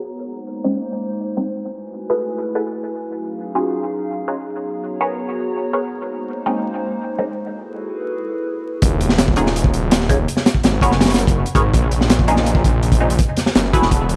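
A dry, gritty hardware sound with vinyl crackle, a dulled top end and light small-room ambience frames this raw, frenetic drum and bass and jungle cut at 165 BPM in Eb minor, taken from a longer piece. A warbling, nostalgic tape-like pad holds sustained minor eleventh chords under muted, wave-folded dub stabs with phaser and dub echo, while filter sweeps run through the whole opening, carrying on through a break at 7.4 seconds. At 8.8 seconds the pad stops and the drop arrives: a crunchy, up-front breakbeat kit with a punchy kick and high-tuned snare joins a thick, menacing detuned saw bass with tube saturation beneath the continuing stabs.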